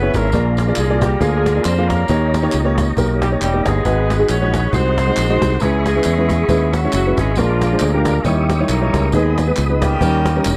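The sound is dry and close, in the manner of a 1970s studio, with little reverb. This short excerpt of uptempo gospel swings its eighth notes and carries a solemn, fervent mood. A mellow horn section carries the melody in octave doubling, its light vibrato set back in a distant, roomy space, while a boxy grand piano with short sustain fills in the accompaniment. A tonewheel organ holds sustained chords in a clear, lightly overdriven tone, with key click, chorus vibrato and a slow rotary speaker. Up front, a growly fingered electric bass anchors the low end, and from 0.1 seconds a snappy cajon with snares sits in the background alongside egg shaker and group handclaps. The harmony moves through dominant sevenths and minor sevenths, including a D#7b9 near 8.2 seconds before settling back toward D#7.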